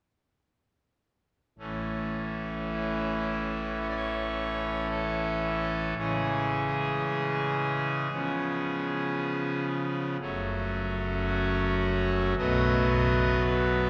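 Serene and reverent, this classical chorale-style passage, cut from a longer piece, features a solo pipe organ on a brassy, bright trumpet stop with a romantic, up-front voicing, sounding from 1.6 to 13.9 seconds at a slow, rubato 53-58 BPM in 4/4 and A major, its harmony moving from A through C#m, C#7 and F#m to B7, while a wet cathedral reverb with a 6.1-second decay places the listener further back in the room.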